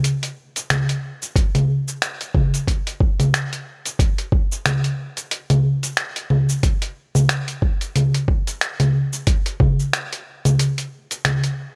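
A dusty soul sampler-style drum kit of cabasa, congas, finger snaps and hi-hat opens this hypnotic downtempo fragment at 91 BPM with swung 16ths, gritty and overdriven, close and dry as if re-recorded in a small room, before a compressed, thumpy electronic kick joins up front at 1.4 seconds and drops out at 9.8 seconds.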